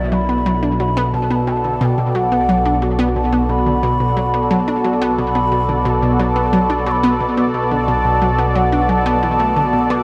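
Ambient, sequencer-driven space music at 89 BPM in 4/4, this expansive, mysterious fragment of a longer piece rests on a single Bm7 chord in B minor, tuned to A4 = 438 Hz. A distant, hollow wooden flute carries the melody with vibrato and tape echo, floating over an airy, evolving pad that sits up front with chorus and a resonant filter swell. A detuned analog pluck riff with chorus and tape echo and a fat, thick analog bass holding B1 play throughout, all bathed in a huge, wet reverb with an 8.5-second tail.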